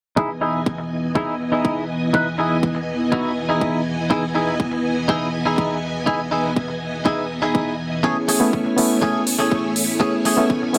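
Set in a light digital ambience, this groovy, feel-good nu-disco clip at 122 BPM in E major rides a punchy, high-passed electronic kick beneath lush, vintage string-machine chords that pump with sidechain and shimmer with ensemble chorus, while a bright, twangy clean electric guitar riff, run through lush chorus, dub echo and a filter sweep, sits up front over a move from Emaj7 to Amaj7 at 8.0 seconds, where a reedy, barky electric piano with dub echo enters and crisp electronic hi-hats join at 8.3 seconds.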